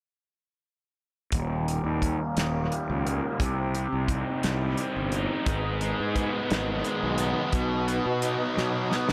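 An echo-heavy mix with light reverb and a studio ambience frames this hypnotic, kaleidoscopic slice of psychedelic rock in 6/8, cut from a longer piece. From 1.3 seconds a double-tracked, compressed fuzz guitar carries the riff up front, its picked distortion colored by phaser, a low-pass filter and analog delay, while a filter sweep runs across the passage. Beside it, a fingered electric bass with overdriven fuzz fills out the low end, and a damped 70s drum kit, dry with a tight kick and medium-tuned snare, plays hi-hat, kick and snare through its own analog delay. At 5.5 seconds a clean tonewheel organ joins in the background with sustained chords, its key click and chorus vibrato turning through a slow rotary speaker. The harmony moves from Eb to Cm, Abm and B, and a drum fill arrives at 8.6 seconds.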